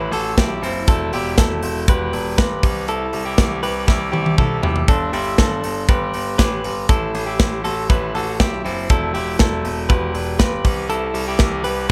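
Jangly indie pop at 120 BPM in a bright, breezy straight 4/4, this excerpt sets picked arpeggios on a clean, compressed, direct-recorded electric guitar with spring reverb up front over a brilliant, polished grand piano carrying deep bass lines, while a punchy acoustic drum kit with a medium-tuned snare drives hi-hat, kick, snare and toms, including a fill at 3.9 seconds, through a light reverb as the chords cycle through Am, Em, Cmaj7 and Gadd9.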